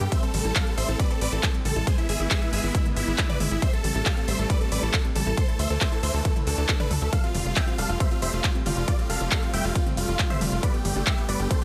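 A digital ambience surrounds this driving, soaring uplifting trance excerpt, taken from a longer piece, with a punchy electronic kick sitting up front from 0.1 seconds, tape-warm and re-recorded in a large room. A layered big-room dance kit adds crisp hi-hats, handclaps, ride cymbal and toms. Beneath them, a tight sequencer bass built from sawtooth, square and triangle waves gives a mellow, decaying filter pluck and sits forward in the mix, pumping with the sidechain. The huge, euphoric supersaw lead carries the melody with bright, detuned unison saws, a moving notch, compression and delay. In the background, a lush detuned pluck spins arpeggios through delay, while a rich, smooth studio string section holds bowed chords with vibrato, both breathing to the sidechain. The harmony moves from Am7 through E/G# and back to Am7, then on through Dsus2 and Fadd9 to a closing Gadd9.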